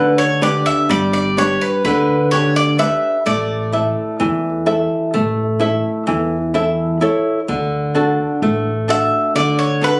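Tender and warm, this fragment of Greek folk for bouzouki band moves at 128 BPM in 9/8 in D major: an up-front picked bouzouki carries a metallic, double-strung melody touched by plate reverb, a fingerpicked flamenco guitar with old, woody strings accompanies it, and a pizzicato upright bass on steel strings sits lower in the mix, as the chords pass from G to A5 before a new section lands on D at 7.5 s, all captured on a phone in a small room with moderate reverb, studio ambience and compression.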